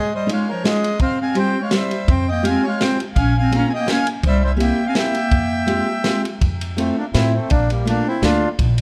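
Nostalgic and charming, this short piece cut from a longer musette waltz in F minor moves at 167 BPM in 3/4, with a swung, rubato feel. A reedy accordion, boxy as if in a small room and set up front with a touch of tape echo, carries the melody. A classical-style clarinet plays a second line until about 6.2 seconds. A fingerpicked steel-string acoustic guitar with an auditorium sound supplies the accompaniment. A crunchy breakbeat kit of kick, snare and ride sounds gritty and saturated, with dark cymbals, a tight kick and a rolled-off top. From 2.1 seconds a woody, thumpy pizzicato upright bass on gut strings adds a dark low end as the loudest part. The harmony passes through chords such as Fmadd9, Bbm7 and C7 before a new section at 6.4 seconds turns to Fmaj7 and Bbmaj7, all captured with close, detailed microphones and light reverb.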